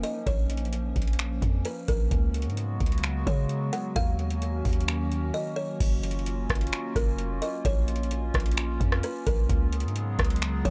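A buzzing, woody kalimba melody with delay opens this hazy, spacious cloud-rap excerpt over a warbling, nostalgic tape-like pad whose detuned chords carry chorus, built-in reverb and sidechain pumping. Beneath them sit a deep, boomy 808-style bass and a booming analog drum machine, up front with a deep kick, metallic hats, snaps, rim clicks and crash, in a half-time feel. The drums drop out briefly from 5.3 to 5.8 seconds before the harmony moves to a Gbmaj7 and the Bbm and Db7sus4 chords return.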